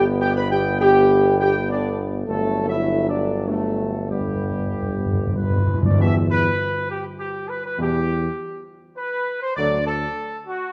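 Majestic and triumphant, this short classical brass passage moves at 100 BPM in 3/4, cut from a longer piece. A mellow trumpet section carries the melody up front with tight ensemble playing, while a French horn section with light vibrato sits at a distance and a soft-attack trombone section rests in the background, both holding sustained chords. A mellow tuba, also up front and touched with light vibrato, anchors the bass. Between 4.1 and 6.0 seconds, timpani struck with soft mallets add a round fill, close and present. The harmony moves from G through D/G and back to G, then to E minor, and closes on D, and the brass sections sound distant and roomy within a moderate scoring stage reverb.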